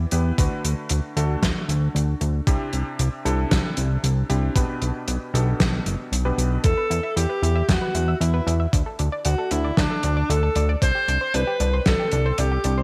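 A straight, steady 4/4 groove drives this nocturnal, nostalgic synthwave fragment, cut from a longer piece. An overdriven, thumpy electronic kick sits beside a dry, dark soul kit whose fat snare and hi-hat carry studio and gated reverb. Underneath, a thick, detuned analog bass with ring modulation and a filter sweep holds the low end, pumping against the sidechain. A vintage electric grand piano with clangy lows and chorused unisons opens with gritty 12-bit stabs through delay, over chords moving from D to Cadd9 and Gadd9/B. At 6.6 seconds the piano drops out, and a distant, roomy alto saxophone takes the melody with vibrato and delay over Em, D5 and Csus2. A round, bright analog pluck with a sub octave adds chorused arpeggios alongside it. The whole mix has a bright 1980s digital sheen with lush hall reverb.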